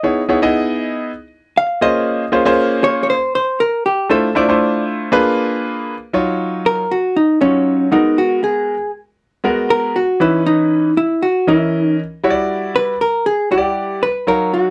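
A dry, close 1970s-style studio sound with light reverb frames this slick, danceable funk excerpt at 118 BPM in a straight 4/4, settling into Eb phrygian from 6.1 s over minor-ninth chords such as Dbm9, Ebm9 and Abm9. A dark, clean, compressed vintage hollow-body jazz guitar with slapback echo carries the picked melody up front and takes a solo from 6.1 s to the end at 14.7 s. A clear concert grand piano with a worn, deep-bass tone and short sustain supplies the accompaniment throughout.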